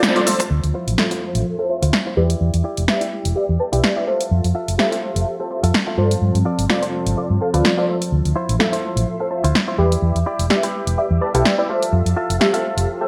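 A brief break opens with a band accent on a rootless G9sus4, and then a filtered disco house groove settles in, groovy and sensual, cut from a longer piece with a filter sweep running from 0.5 seconds to the close. Up front, a house drum kit of layered electronic punchy snare, shaker and tape-warm hats swings lightly on the sixteenths, with studio and gated reverb on the kit. A round, dark hollow-body electric bass, fingered and amped, anchors the low end through a low-pass filter. Above it, a nasal, detuned polysynth comp with a quick filter pluck and sub octave plays funky chords through chorus, phaser and a cassette-tape tint, while a lush vintage string machine sustains slow-attack chords in the background. A bright, twangy clean guitar, recorded direct and compressed, picks a riff and adds a fill from 11.0 to 11.9 seconds over a cycle of Dm9, Em7, Fmaj7 and G9sus4, all set in a moderate plate reverb with a bright 1980s-style digital production.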